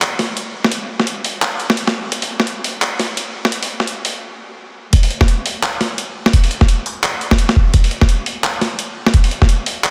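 Tense and dark, this excerpt of half-time drum and bass at 171 BPM in 4/4, with 16th notes swung at 59%, opens on a boom bap sampler-style kit of handclaps, hi-hat and a high-tuned, softly clipped snare, joined at 0.7 seconds by a thumpy electronic kick, both parts sampler-style, compressed, pitched down, gritty, re-recorded in a large room and set up front, as a build-up halts in a stop at 4.2 seconds before the drop lands at 4.9 seconds under light reverb and a dense, heavily limited modern master.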